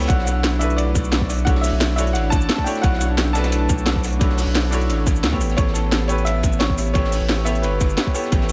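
A straight 4/4 groove at 175 BPM drives this soulful, melancholic liquid drum and bass excerpt. A tight, layered electronic kick sits under a produced drum kit with a cracking snare, crisp hats and cabasa, while a gritty, saturated breakbeat kit with dark cymbals and a high-tuned snare rides in the background, its top rolled off. A thick, sine-like sub bass is placed up front, deep and sustained, as a very quiet detuned analog pad with chorus holds mellow chords beneath. A brilliant concert grand piano plays accompaniment with a full low end, and a second intimate grand piano, its action noise audible, carries the melody from 0.1 seconds. The harmony moves from Bm11 to A9 at 5.4 seconds, and dub echo colors the pianos and both kits in an echo-heavy mix with light reverb and small room ambience.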